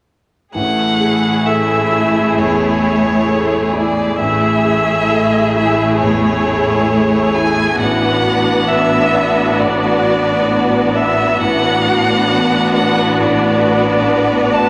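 Rubato and unhurried at 66 BPM in 4/4, this uplifting, moving cinematic excerpt in A major drifts from an Amaj7 chord to D6/A at 7.8 s. An up-front, clear solo violin sings the melody with focused vibrato over a smooth, even violin section, while a lush viola section with expressive portamento fills the middle. A rich double bass section anchors the low end, a close studio cello section sits in the background, and an intimate concert grand piano with audible action noise adds deep bass, all bathed in a wet scoring-stage reverb.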